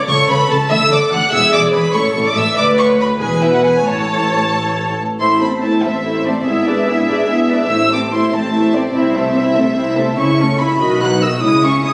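Captured on a phone in a moderately reverberant recital hall, this graceful, spirited classical-period movement for string orchestra moves at a quick 96 BPM in a rubato 6/8. An up-front violin section carries the soft-attacked, lightly vibrato melody sul tasto, a second violin line sits beneath it, and an intimate viola section accompanies close by, while a woody, dark cello section in the background and a pure, floating double bass section share the bass, all shifting from A major to A minor at 5.2 seconds.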